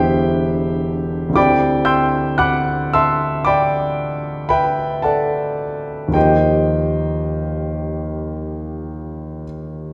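Classical impressionist solo piano unfolds in a slow, rubato 9/8, with the dotted-quarter pulse drifting at around 35-40 BPM and a serene, dreamy mood throughout this short fragment cut from a longer piece. A concert grand carries everything alone from 0.0 to 9.9 seconds, spanning from a deep E1 in the bass up to G6, its tone intimate and polished with long sustain and audible action noise beneath the notes. The harmony moves from Em7 to a D9sus4 at 1.4 seconds, then shifts to an Ebadd9 at 6.2 seconds, lending the close a fresh color. The instrument sits up front and present, while a wet recital hall reverb with a 1.4-second decay, as in a church or concert hall, surrounds it with gentle space.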